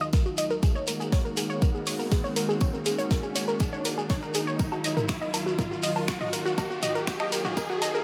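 Melancholic and cinematic, this melodic techno build-up sets a thick, warbling, chorused pad on sustained chords beneath bright, detuned sawtooth pluck arpeggios that pump with the sidechain and trail a digital delay, while an up-front, layered electronic kick plays alongside a tape-warmed analog drum machine of snaps, hats, toms and woodblock, a soft brushed acoustic kit and a grainy shekere sit in the background, and an electronic riser and filter sweep run through the whole excerpt inside a light small-room reverb.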